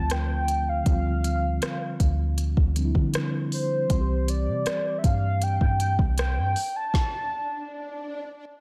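The recording sits in a digital ambience, with a velvety synth lead and a tape-tinged drum kit placed up front. This is a moody, late-night contemporary R&B fragment cut from a longer piece, moving in a straight 4/4 over Dm7, G7sus4/D and C. The lead carries the melody with a smooth, detuned sawtooth-and-triangle tone, wave-folded and coloured by chorus, vibrato and digital delay. Beneath it, a mellow tine electric piano plays clean accompaniment as if through built-in speakers. A deep, round 808-style bass with a sine-like, decaying body and a smooth R&B drum kit (soft kick, woody snare, rim click and silky hi-hat, re-recorded in a large room) hold the groove until the piano and bass stop at 6.6 seconds and the drums at 7.1. An electronic swell enters at 7.2 seconds beneath the lingering lead as the music thins toward its close.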